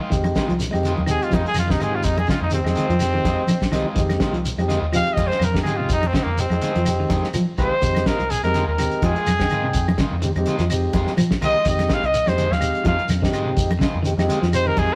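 A clear, up-front trumpet with vibrato solos from 1.1 seconds over an intense, funky afrobeat groove, backed by a vintage combo organ, a clean picked electric guitar playing background arpeggios, a twangy, slightly broken-up guitar adding stabs, a deep, round fingered dub bass, a cloth-damped, thuddy drum kit with a fat snare and tight kick, thick-skinned congas, a grainy shekere and faint woody claves, all in a rough rehearsal-room recording with a moderate stone-room reverb.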